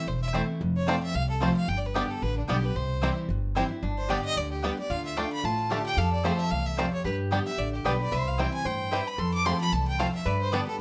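Bluegrass at a lively, rustic 224 BPM in 4/4, with a swung eighth-note feel, cut from a longer piece and running a touch under 11 seconds. A clear, biting fiddle carries the melody, bowed by one player with light vibrato and an earthy, nasal edge, sitting close and up front with plate reverb. Beneath it, a full-bodied dreadnought acoustic guitar picks the accompaniment, the woody, dark pizzicato upright bass holds the low end from the start, and a bright, twangy banjo played with fingerpicks rolls out percussive arpeggios alongside double-strung mandolin stabs. At 3.8 seconds a lap resonator guitar joins with a metallic, slide-played second line, its sound given a slapback echo. The chords move from Am through F, G, C and Dm before closing on Gadd9, all captured with close, detailed microphones in a lightly reverberant space.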